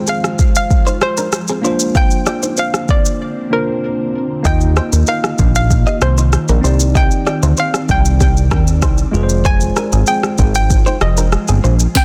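A close, dry mix with a dense, heavily limited modern master opens this sunny, breezy afrobeats excerpt at 96 BPM in a straight 4/4. An electronic afro-pop kit sits up front with a deep kick, rim click, shaker and a sharp snare given soft clipping, while a hollow, nasal square-wave pluck carries the bouncy melody through chorus and digital delay. Beneath it a worn, slightly out-of-tune tine electric piano plays mellow accompaniment through a combo amp, and a bright, direct-recorded clean guitar picks a compressed riff washed in lush chorus and delay. An ethereal, airy pad holds sustained chords in the background, colored by ensemble chorus, built-in reverb and phaser. After a break from 3.2 to 4.5 seconds, a fat, detuned sawtooth analog bass enters up front at 4.5 seconds with a filter-plucked, decaying tone and a moving notch, as the harmony shifts from Fmadd9 and Bbadd9 through Ebsus2 and Cmadd9 before returning to Fmadd9.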